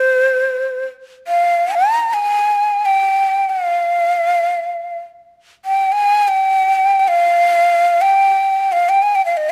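Arabic music in free time, this short passage from a longer piece has a hypnotic, soulful mood. A solo ney carries everything from 0.0 to 9.5 s, its end-blown reed-cane tone breathy and bright, moving between C5 and Bb5. Notes begin with a soft attack and bloom with vibrato, and the playing has an unsteady, human quality that adds to its soulful character. The instrument sits up front, captured by close, detailed microphones that reveal the air in every phrase, with light reverb giving it a gentle sense of space. The tuning is set to A4 = 438 Hz, lending the line a slightly lowered center.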